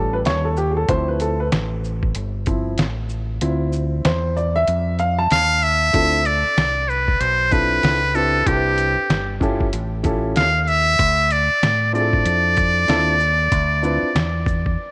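Jazz-hop at a mellow, smoky 95 BPM in D dorian, with a swung 16th-note feel over a woody, intimate upright piano whose action noise is audible, a round, punchy fingered dub bass, and a muffled, pitched-down sampler drum kit with a thumpy kick, snare, hi-hat and shaker. The piano takes the opening solo over A7b13 and Dm9 chords, and the kick drops out between 3.4 and 5.9 seconds. A buzzy, brilliant muted trumpet enters up front at 5.3 seconds with a soft attack and light vibrato, playing a jazz-style melody through Cmaj7 and back to Dm9, all within a light digital reverb in this excerpt from a longer piece.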